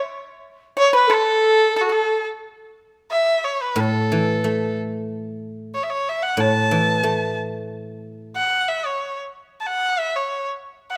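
Pastoral and festive, this Chinese chamber ensemble passage in a free, rubato 2/4 is led by a rich, earthy erhu melody, bowed up front with light vibrato and portamento from 0.8 s to the close. A hollow, airy bamboo dizi with a buzzing membrane and a dry, percussive pipa briefly play a second line at the start, dotted by a woodblock in the background, before a silvery, ringing guzheng accompaniment sounds in the low register from 3.8 s to 8.4 s. Moderate recital hall reverb gives this fragment of a longer piece a natural sense of space.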